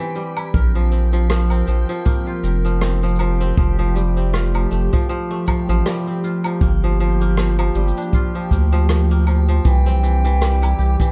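Wistful and delicate, this folktronica excerpt moves at 79 BPM in G dorian with a gentle swing on the 16ths, as a warbling, nostalgic tape-like pad holds sustained chords and a ringing, fingerpicked kora spins crisp arpeggios through tape echo and plate reverb over a C, Bbsus2, Fadd9, Gm7 progression. A round, deep analog bass sits up front beside a punchy acoustic kick, while a jazz brush kit adds hi-hat, rim click, shaker and woodblock, and a reversed, dreamy granular texture glimmers in the background. At 9.7 seconds a distant wooden baroque flute enters on a single pure, unsteady note with vibrato, all within a dark, warm production.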